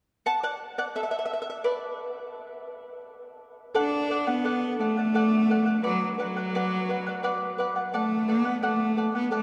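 A clear, focused bowed cello with vibrato carries the melody from 3.8 s over a bright, shimmering fingerpicked charango whose double strings open the piece alone from 0.3 s, giving this melancholic yet festive Andean folk fragment at 86 BPM in 3/4 a straight feel over D and B minor chords, set in a church-like space with long cathedral reverb and lossy compression artefacts.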